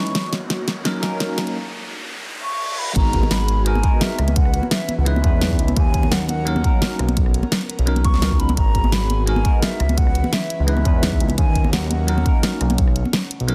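A smooth, gliding synth bass sits up front in this lush, melancholic liquid drum and bass cut from a longer piece, arriving at the drop at 3.0 seconds with detuned sawtooth and square-wave tones that slide between notes. The track runs at 171 BPM in G# minor, and the opening build-up carries a filter sweep, a drum fill, a brief break and an electronic riser capped by a reverse cymbal before the full groove lands. From there a punchy, layered electronic kick joins the produced pop kit, whose fat snare, rim clicks and hi-hat have been present since the opening, and together they drive the beat, while close, dry congas played with hard hands stay in the background. A bell-like tine electric piano, bright and clean through phaser and tape echo, and a soft, airy pad with chorus and sidechain pumping carry the chords, moving through G#m9, C#m9 and Bmaj9. Over this, a breathy concert flute with a hollow, straight tone and tape echo sings the melody from 2.4 seconds. 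The mix is dry and dense, with a heavily limited modern master.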